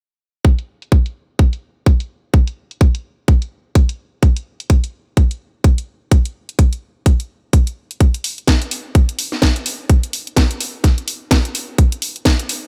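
A tight, tape-warm electronic kick sits up front from 0.4 s in this bouncy, swaggering house excerpt at 127 BPM in 4/4, alongside a garage kit whose cracking snare and hi-hats are low-pass filtered and set lower in the mix, all swinging on the sixteenths in a dry, layered production that carries a filter sweep on the drums through to 12.7 s.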